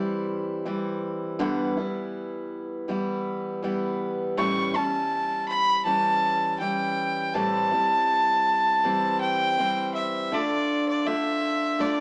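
A picked steel-string acoustic guitar opens this reflective, wistful acoustic folk piece in A minor at 81 BPM, sitting up front with an auditorium-like body as it moves from a rootless Am7 to G6. At 4.4 seconds a single bowed fiddle enters with the melody, earthy and clear with a light vibrato and a slapback echo, standing forward over the accompaniment as the harmony passes through A7 and back to Am7 before turning to Dm at 10.3 seconds. A moderate studio reverb and a small-speaker quality frame this short, straight 4/4 cut from a longer piece.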